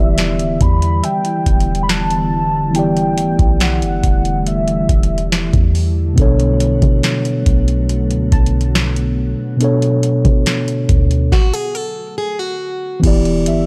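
A booming analog drum machine sits up front in this late-night contemporary R&B fragment, its deep kick, crisp snare, metallic hats and crash carrying the sound of a small room. A mellow tine electric piano plays the accompaniment, clean and direct, over a soft, round 808-style bass with a dark, decaying tone, as the harmony moves from Em7 to Bm7 and back. A velvety synth lead, detuned and touched with vibrato and chorus, carries a longing melody through the opening seconds, while a glassy FM pad holds ethereal chords in the background with ensemble chorus and its own reverb. A gentle pluck with analog delay adds faint texture until 10.5 seconds. At a stop that begins at 11.3 seconds, a bright, picked plugged-in steel-string acoustic guitar enters with short delayed arpeggios, and the whole mix has a dry, gritty character with tape and transformer saturation.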